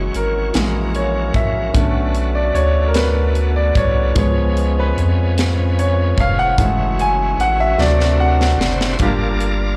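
The clip sounds like a live gig heard through the venue's PA, with club reverb wrapping every instrument. It is a slow, fervent and solemn gospel passage in 6/8, cut from a longer piece. A clear, natural grand piano sits up front and carries a solo across the first 9.0 seconds. Beneath it, a bright, shouting tonewheel organ holds full chords through a slow rotary speaker with light overdrive, while a mellow French horn section adds tight, smooth sustained chords with light vibrato in the background. A round analog bass, deep and dark with a fast attack, anchors the low end up front. A crisp, polished fusion kit with a high-tuned snare and punchy kick comes in at 0.1 seconds and plays a fill from 7.8 to 9.0 seconds. The harmony moves through chords such as Bm7, C#7 and F#m7 before turning to D7 and landing on Gm7.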